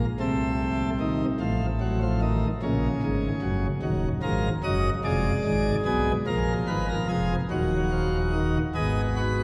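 Serious and driving, this short excerpt from a baroque-style four-part fugue in Eb minor moves at 49 BPM in a straight 6/8, cut from a longer piece. A solo pipe organ on full plenum with mixtures sits up front, its brilliant baroque voicing and crisp chiff spanning Eb1 to Eb5 as the harmony passes through Bbm, Ebm and a diminished seventh before landing on G#m at 8.7 seconds. The church or concert hall acoustic wraps the sound in a long, wet cathedral reverb.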